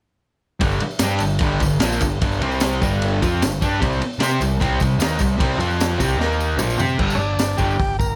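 A bright, double-tracked fuzz guitar riff sits up front in this rowdy, raw garage rock clip at 151 BPM. It is driven by a round, punchy overdriven picked bass and a crunchy breakbeat kit with a high-tuned snare, dark cymbals and a gritty, saturated small-room sound, while a jingly tambourine stays close and dry in the background. After a drum fill at 6.2 seconds, a vintage combo organ enters at 7.1 seconds with a buzzy, heavy-vibrato melody, all captured with little reverb.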